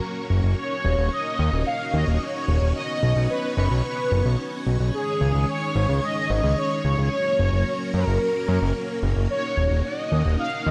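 A fat, saturated analog bass sits up front, entering at 0.3 seconds and driving this moody synthwave excerpt in a straight 4/4. Above it, a mellow synth brass carries the melody with a dark, brassy, detuned tone treated with chorus, phaser, slapback echo and digital delay, while a vintage string machine holds lush sustained chords with a soft attack and ensemble chorus. A moderate hall reverb gives the piece a big arena sound as the harmony moves from Gb through Ebm7, Badd9 and Dbsus2.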